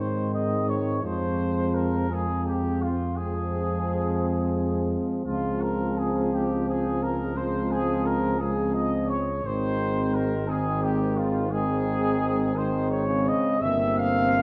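From the first moment, a full brass band plays together in a serene, hymn-like classical passage in Ab major: a mellow, tight trumpet section carries the melody up front, and a French horn section with light vibrato sings a second line in the background. A brilliant, vintage-toned trombone and a dark, smooth-topped euphonium fill out the accompaniment, while a close-miked tuba anchors the bass. At a rubato 57 BPM in 12/8, the chords move from Ab through Fm and Dbmaj7, return to Ab at 9.4 seconds and close on C7/G, all in a reverberant concert hall in this short excerpt from a longer work.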